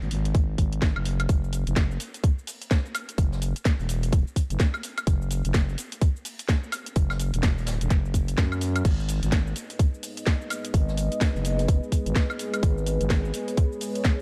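A tight, up-front electronic kick drives this gritty, aggressive bass house cut at 127 BPM in 4/4, swung at 60% on the sixteenths. A layered garage kit adds a cracking snare, hats, shaker, woodblock and crash, while a distant, roomy brush kit sits very quietly underneath. A growling, thick FM bass pumps against the kick through chords moving from F#sus2 to Esus2 and then G#m, where a deep, warbling pad with chorus enters at 9.7 seconds, all within a dark production with light reverb.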